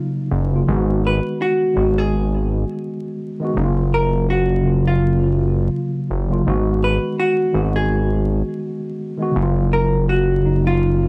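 A dark, clean hollow-body jazz guitar carries the melody over a mellow tine electric piano heard through built-in speakers from the start, joined at 0.3 s by a fat, detuned, wave-folded analog bass with a filter sweep, in this hazy, nostalgic lo-fi hip hop fragment at 83 BPM with swung 16ths in G# dorian, moving between F#maj7 and G#m7 beneath wet studio reverb, vinyl crackle and a dark, warm production.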